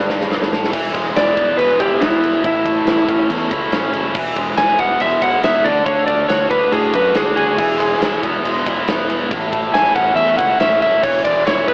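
A slightly broken-up electric slide guitar, played with fingerpicks, takes the lead from 1.2 seconds and carries a swaggering, confident solo over a classic rock groove at 140 BPM in E major, moving through E, A and D chords. Beneath it, a bright, overdriven, double-tracked electric guitar pushes a picked riff up front, and a growling fingered electric bass adds punchy, amped grit. A huge arena drum kit with a punchy kick and bright cymbals opens with a fill at 0.0 seconds and then drives the beat. The recording sits in a large studio reverb and has the sound of AM radio.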